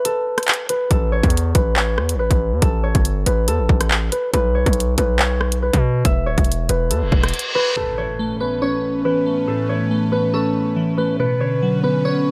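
A dry, close-sounding cut from a longer hip hop drill track at 140 BPM in half-time, cold and ominous, opens on a mellow, ringing concert harp melody that carries through to the end. A drill drum kit of hard-clipped kick, bright hats, handclaps and rim click joins almost at once, and a heavy, saturated 808-style bass enters at 0.9 seconds; both stop as a reverse cymbal leads into an electronic impact at 7.8 seconds. From there, glassy digital keys with chorus and a soft, breathy pad sit beneath the harp, the harmony resting on Aadd9 before turning to Bmadd9.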